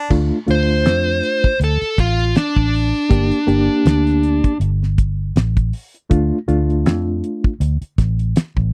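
A dry, close 1970s-style studio sound frames this smoky, mournful soul blues excerpt at 80 BPM in D minor, where a damped drum kit with a fat snare and tight kick, a round, foam-muted fingered bass and a reedy electric piano with fast tremolo move from Dm to Gm and back, while an overdriven, dark lead guitar with slapback echo plays its solo line from 0.5 to 4.6 seconds.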